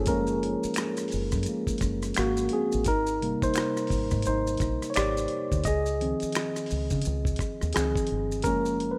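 A worn, slightly out-of-tune tine electric piano takes the solo up front through its built-in speakers, moving from Gbmaj9 through Abmaj9 and Dbmaj9 in this sensual, warm neo-soul R&B fragment in Gb lydian at 86 BPM with a swung 16th-note feel. Beneath it sit a dark, round, foam-muted fingered electric bass, a gritty, compressed sampler-style drum kit with thumpy kick, hi-hat and rim click, and quieter maracas and finger snaps caught in a live room, the whole rough home-demo mix sitting in digital ambience.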